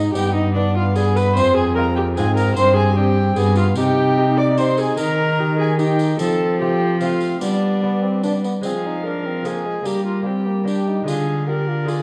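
In a steady 3/4 at 148 BPM, this solemn, rustic renaissance-style consort dance, cut from a longer piece, sets a rich, lightly vibrato gut-string violin melody in the background against an up-front, smooth-topped viola second line and a dark, reedy cello bass, with a mellow, close-miked bassoon and a delicate fingerpicked double-strung lute filling the accompaniment, a jingly vintage tambourine entering at 0.2 s, all in a wet recital hall whose dark production turns through G, Fm and Cm before settling on Ddim at 11.1 s.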